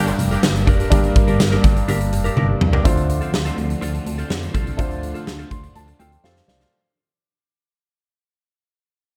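A straight 4/4 groove from a huge arena drum kit with a punchy kick and gated reverb drives this nostalgic, moody 1980s-style pop fragment, underpinned by a round, mellow FM bass, with a warm grand piano accompanying and adding a fill from 5.3 seconds, a clean, direct-recorded electric guitar riff coloured by lush chorus and digital delay, and a swirling, warbling string machine holding phased chords in the background as the harmony moves from Gm to Dm7 at 2.9 seconds, where a fade-out begins.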